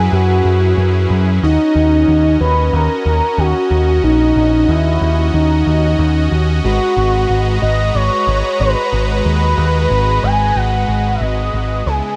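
Cinematic and moody, this synthwave excerpt moves at 92 BPM in G# minor, with a nasal, expressive synth lead carrying the melody through lush chorus, digital delay and vibrato over soft, detuned supersaw chords. An overdriven picked electric bass sits up front with a round, amped tone, and the chords shift from F#7sus4 to D#m7 and then G#m7 at 6.6 seconds. Bright 1980s-style digital production and a moderate plate reverb frame the parts before a fade-out beginning at 10.1 seconds.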